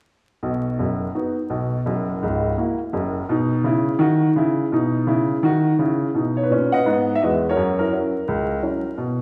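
Swinging and exuberant, this short stride piano excerpt bursts along at a brisk 169 BPM in 4/4, with a lilting swing on the eighth notes in B major. A single upright piano carries everything as the solo voice from 0.4 to 9.2 seconds, ranging from a deep C#1 in the bass up to F#5. Its tone is woody and natural, placed up front in the mix. The harmony moves between B and F#7, and the passage shifts into a new section at 6.1 seconds. A recital hall reverb gives the piano a roomy, church-like tail, while a layer of vinyl crackle lends the recording an aged patina.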